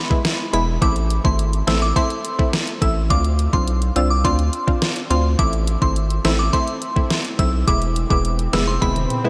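A saturated sub bass sits up front in this bouncy, hypnotic dancehall excerpt at 105 BPM in A harmonic minor, its deep, thick sine tone entering at 0.5 seconds with a fast attack and long sustain. Above it, a glassy synth bell carries the melody high in its register, a crystalline, warbling FM voice with a vintage cast, colored by chorus, tremolo and a diffuse ambient delay. An analog pluck fills in the accompaniment with round, detuned sawtooth notes that decay after a fast attack, treated with chorus and pumping sidechain. The pop drum kit is electronic and layered, with a knocking kick, a deep snare, rim clicks, hi-hat and toms, overdriven and placed up front, closing with a drum fill at 8.8 seconds as a background electronic swell rises from 7.9 seconds. The chords move from E to Am, Dm7, back to Am and E, all set in a dreamy mix soaked in a huge ambient reverb.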